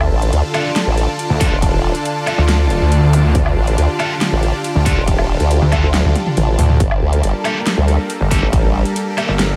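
This heavy wobble dubstep excerpt opens at once with a formant-sweep wobble bass, a lush, detuned supersaw pad pumping under sidechain with a phaser, a distant, biting symphonic string section in the background, and a dubstep drum kit with a huge snare, metallic hats, toms and woodblock in a small room. The mood is aggressive and heavy, moving at 139 BPM in 4/4 with a half-time feel, and the harmony shifts from D minor to G minor add9 at 6.8 seconds. A tight, distorted, picked electric guitar adds bright stabs trailed by diffuse ambient delay. At 1.3 seconds a snarling, growling saw bass enters up front with detuned unison and distortion, joined almost immediately by a punchy, overdriven electronic kick. A very quiet electronic zap flickers past, and a drum fill lands at 5.9 seconds. The mix sits in light reverb, with the two basses dominating the foreground.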